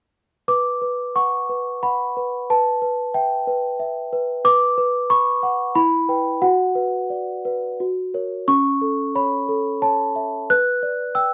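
A bell-like, delicate solo celesta sits up front and carries this wistful, eerie classical lullaby excerpt in B minor, moving at 90 BPM in a rubato 3/4 from 0.5 to 11.3 seconds across a range of C#4 to F#6 over shifting B minor, E minor, F-sharp and G harmonies, all captured with close, detailed microphones and light reverb.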